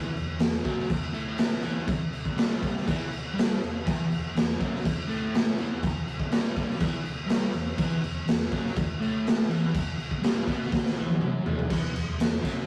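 A crunchy, overdriven electric guitar opens this menacing, raw garage rock clip at 0.0 seconds, its picked, double-tracked riff sitting low in the register over a steady E minor chord. At 0.2 seconds a raw garage drum kit joins, set up front with a punchy kick, a medium-tuned snare, toms, and crash and ride cymbals. The kit sounds gritty and lo-fi, muffled with a rolled-off top yet ringing in a bright stone room. The tempo is a straight 122 BPM in 4/4, and a drum fill arrives at 10.7 seconds before the harmony drops away. Light reverb and a warm saturation give the whole clip the feel of a rough rehearsal-room take, cut from a longer piece.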